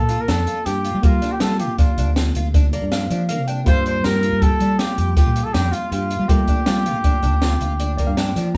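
A mellow, distant trumpet carries the melody from the outset of this tense, intricate progressive instrumental in 7/4, with a dark, round fretless bass, a barky tine electric piano through a combo amp, and a very quiet, clean electric guitar on a second line sounding alongside it. A shimmering, octave-doubled twelve-string acoustic guitar picks arpeggios while an open jazz kit sits up front with a high-tuned snare and boomy kick. The bright electric piano steps out with fills at 2.5 and 7.8 seconds, all captured as a band playing live in one room with moderate studio reverb in this brief excerpt cut from a longer piece.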